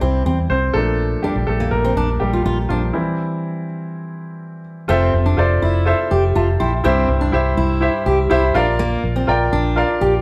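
A clear, polished baby grand piano sits up front in this hopeful, anthemic pop piece, cut from a longer performance and moving at 123 BPM in a straight 4/4 in F major. The piano takes a solo over the opening 4.9 seconds, with a stop from 2.9 seconds, while the chords shift between C and Bb before settling on Fmaj7 and cycling back through C and Bb. Beneath it, a dark, foam-muted vintage electric bass adds a round, punchy low end that sits prominently in the mix. A full-bodied jumbo steel-string acoustic guitar plays a fingerpicked riff in its middle register, lending a warm texture. The band sounds as if it is playing live together in one large studio, with a moderate reverb giving the room a natural depth.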